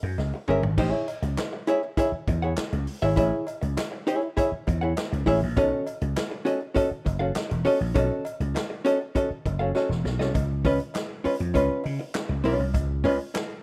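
Playful and gritty, this short funk cut from a longer piece moves in a straight 4/4 and has the rough, close feel of a home demo in a small room. Up front, a dark, clean, picked hollow-body jazz guitar plays compressed chords, moving from Amaj7 at 0.8 seconds to Cb9 at 5.6 seconds and landing on Db9 at 10.3 seconds. Beside it, a bright, growly slap bass with an amped, punchy edge carries the low end. A swinging big-band drum kit sits further back in a roomy, distant space, its dark cymbals, medium-tuned snare, punchy kick, toms, hi-hat and handclaps opening with a fill at 0.2 seconds and adding another just before the second section. A metallic cowbell sits in the background throughout.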